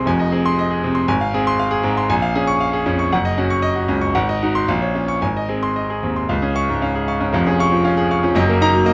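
Close, detailed microphones and a light reverb place a bright concert grand piano up front, its brilliant treble ringing over a deep bass that reaches down to F1 and climbs as high as Db6. This heroic, sparkling virtuoso piano study in Db major moves at 117 BPM in 2/4 with a flexible rubato feel, the solo piano passing through Fm7, Bbm7 and Ab7 harmonies before settling onto a Db major chord at 6.3 seconds to open a new section. The fragment, cut from a longer piece, ends at 8.9 seconds on an Ebm/Gb chord.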